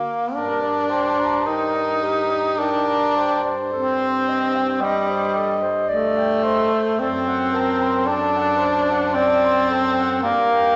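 Solemn and elegiac, this classical excerpt for a single-reed quartet unfolds in a slow, rubato three-beat lilt, as a clear tenor saxophone sits up front with vibrato, sounding alone at 0.0 seconds before the others join at 0.3 seconds. The melody sings in a distant, roomy clarinet set in the background, while an alto saxophone carries the second line and a mellow baritone saxophone anchors the bass with light vibrato. The harmony moves from G minor through a half-diminished chord and a dominant seventh back home, all bathed in the wet reverb of a recital hall with a softened, dark top end.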